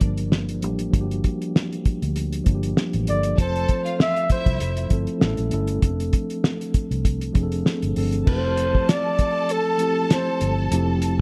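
A mellow tine electric piano, a round, foam-muted fingered electric bass and a cloth-damped, thuddy drum kit with dark cymbals and a fat snare open this smooth, bittersweet 1970s-style soul excerpt at 98 BPM with a light swing, before a breathy, close-miked flugelhorn takes the melody with scooped notes at 3.1 seconds and a lush studio string section with vibrato and portamento joins at 3.4 seconds, all set in a small room.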